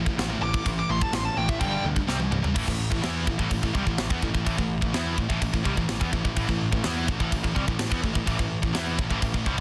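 A dense, heavily limited modern master with small-room ambience carries this relentless, aggressive heavy metal excerpt, cut from a longer piece. Two bright, high-gain picked guitars drive the distorted riff, one up front and one in the background, over a growling overdriven bass and a polished, airy, tight drum kit with bright cymbals, a high-tuned snare and china crashes. A warm, distorted lead guitar with tape echo cries out a high melody from 0.4 to 1.8 seconds, and a drum fill ending at 2.6 seconds launches the next section.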